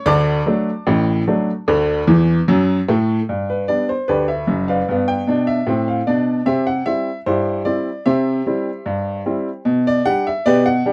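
Ragtime piano at 75 BPM in a straight 2/4, this jaunty, cheerful excerpt features a solo upright piano with a brilliant, woody tone and short sustain, sitting up front in a dry, close 1970s-style studio sound with light reverb, spanning F#1 to D6 as it moves from D major through a fill at 2.1 seconds into G major at 3.3 seconds, with chords shifting from D to G, C and G/B.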